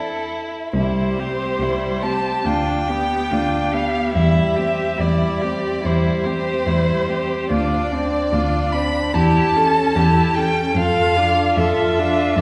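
Two violins and a viola open this slow, elegiac romantic movement for string quartet together. The first violin sings the melody with vibrato and portamento, the second violin holds a smooth, even inner line, and the viola adds a soft-attacked, expressive accompaniment, with both the melody and viola parts sounding slightly distant. At 0.7 seconds the cello enters with a focused, close bass line, and the four rich, bowed voices move with flexible rubato through a melancholic progression from Am and C toward Dm7, A7/E and Dm/F, all set in the wet reverb of a church or concert hall in a passage cut from a longer piece.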